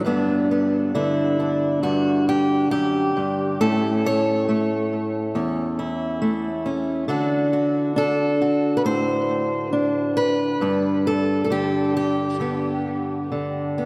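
A fingerpicked steel-string parlour guitar opens the recording at 0.0 seconds and carries it alone through to 13.9 seconds. This is a short fragment of a longer folk piece for solo fingerstyle acoustic guitar, peaceful and nostalgic in mood, moving at a loose rubato around 68 BPM in 4/4. Sitting in G major and tuned to A4 = 436 Hz, it moves through G, A, D7 and back to G, ranging from E2 up to C#5. The guitar is bright and up front, with fresh strings and an audible finger squeak, and a tape echo trails its notes. A lush hall reverb, with an RT60 of 3.3 seconds, soaks the mix in a wet, dreamy haze.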